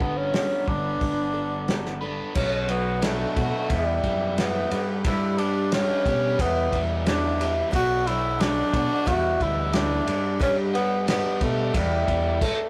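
Folk rock with a heartland lean and a nostalgic glow, this short cut from a longer piece sets a breathy tenor saxophone melody up front, shaded with vibrato and digital delay, over a shimmering, octave-doubled twelve-string acoustic, a bright, double-tracked overdriven electric guitar riff in the background, a round fingered bass and a cloth-damped, thuddy drum kit with dark cymbals and a fat snare, while a very quiet, reedy hand-pumped harmonium slips in with sustained chords at 2.4 seconds, all caught in a rough rehearsal-room sound.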